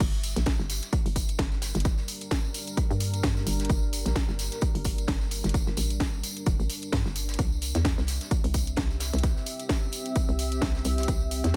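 The kick drum, the hollow, knocking FM bass and the layered drums all start together, setting up a swaggering, gritty bass house groove at 130 BPM in G dorian, with a 16th-note swing that gives the beat a loose strut. Up front, the punchy electronic kick is overdriven and re-recorded in a large room, while the bouncy, dark FM bass, roughened by tube saturation and pumping against the sidechain, decays after each fast attack. Beneath them, an overdriven house kit adds a cracking snare, hi-hat and crash cymbal. A loose acoustic kit sits in the background with a rolled-off top, and a jingly, compressed tambourine rounds out the percussion. From 0.3 seconds a deep, moody pad of detuned sawtooth and sine voices swells in slowly with chorus and reverb, sustaining dark chords that move from G minor to C at 7.4 seconds, all inside a small room ambience across this short cut from a longer piece.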